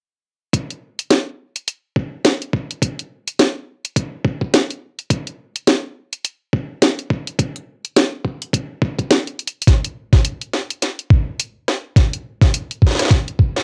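Glitch hop at 105 BPM in 4/4, with a 59% swing on the sixteenths that gives this short cut from a longer piece a swaggering, funky strut. An electronic kick drum sits up front, sampler-style and compressed with a gritty, thumpy punch, re-recorded in a large room and high-pass filtered. Alongside it, a layered, produced electronic drum kit brings hi-hat, rim click and a cracking snare, also up front, with high-pass filtering on the hats and snare. The first section runs until 9.7 seconds, when a drum fill launches a second section that builds up through to the end at 13.6 seconds. The whole thing carries the character of a home recording on cassette in a moderate small room.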